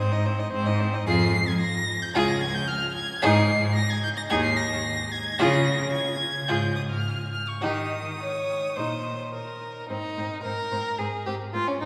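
Bathed in a long, wet cathedral reverb, this cheerful and graceful classical-period string quartet movement in Ab major moves at a quick 110 BPM, with a clear second violin and viola playing smooth, even lines over a focused, vibrato-rich cello bass, until a rich, expressive lead violin enters at 1.1 s, singing up front with vibrato and portamento yet sounding slightly distant in its high register above the group.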